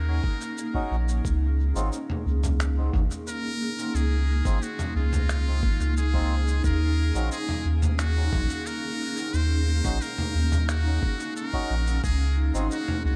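Set in light reverb and a digital ambience, this spacious, deep ambient dub excerpt moves at 89 BPM in Eb dorian, drifting between Ebm7 and Dbadd9 over a round, up-front sine sub bass and a cloudy, evolving granular pad. A thumpy, muffled electronic kick, overdriven and pitched down, joins at 0.2 seconds. A lo-fi sampler-style kit of cabasa, finger snaps and toms follows at 0.4 seconds, and reedy, breathy melodica stabs carrying dub echo arrive at 0.7 seconds. Over the top, a buzzy solo trumpet with a metal mute sings with light vibrato and scooped notes, its close-miked line also trailing dub echo.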